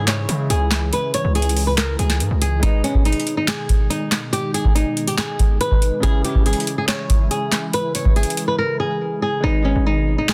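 A dark, fingerpicked flamenco guitar carries the melody up front in this eerie, half-time trap excerpt, its acoustic tone softened by a low-pass filter and trailed by tape echo. Beneath it, a felt-muted upright piano sits in the background with a soft, intimate sound and audible action noise, while a detuned sawtooth pad holds smooth, mellow chords with a chorus effect. A booming analog drum machine drives the track with a deep kick, crisp snare, handclaps and metallic hi-hats, all given a tape-warmed character and a short room on the snare, claps and hats. A distorted, saturated 808-style bass hits hard and heavy over the opening 2.6 seconds, then drops out until it returns at 9.4 seconds, where the hi-hats fall silent after a brief break. The dense, heavily limited master wraps the parts in a digital ambience that deepens the dark, uneasy mood.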